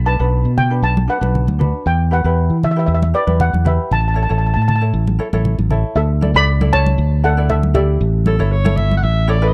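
Calypso at 117 BPM in D major, bouncy and sunny, with a mellow, shimmering steel pan played with soft rubber sticks carrying the melody up front over a warm, amped fingered electric bass, a light thumb-plucked ukulele, and bright, damped congas in the background, before a clear alto saxophone with vibrato enters at 8.3 seconds as a distant, roomy second line, the whole cut captured in a close, dry small-room sound with a 1970s studio character.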